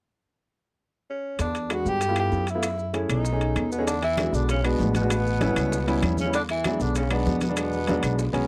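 A dry, close 1970s-style studio sound frames this sunny, danceable Afro-Cuban jazz excerpt at 194 BPM in E mixolydian, with chords moving from E7 through G13, F#m9 and B13 toward E9 and A9. A mellow, distant tenor saxophone with subtone and vibrato carries the melody from 1.1 seconds, over a growly, woody pizzicato upright bass up front, ringing metal-shell timbales, tight and very quiet bongos, grainy maracas, background claves and a baby grand piano with an open tone and long sustain. A bright, punchy trombone adds a forceful second line from 3.7 seconds behind the saxophone, and at 3.9 seconds compressed, saturated congas and a raspy guiro join the percussion.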